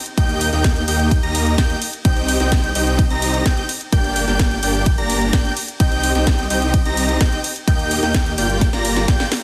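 Euphoric and emotional, this short cut from a longer festival progressive house track drives along at 128 BPM in a straight 4/4, set in C minor. A punchy, tape-warm electronic kick sits up front, joined by a house drum kit whose cracking snare, hi-hat and ride cymbal carry the same produced, large-room character, and a drum fill arrives at 8.6 seconds. Also up front in the mix is a huge, airy supersaw riff spanning Bb3 to Bb5, dense and compressed with vibrato, sidechain pumping and tape echo. High above it, a bold, warbling unison lead with a nasal, vintage edge spins arpeggios between G6 and Bb6, also pumping and echoing. Underneath, a lush detuned saw bass with chorus and sidechain pumping moves through a progression of Eb, Cm, Gm, Cm and Eb before landing on Gm7. The sound is dense and heavily limited, wrapped in light reverb and a digital ambience.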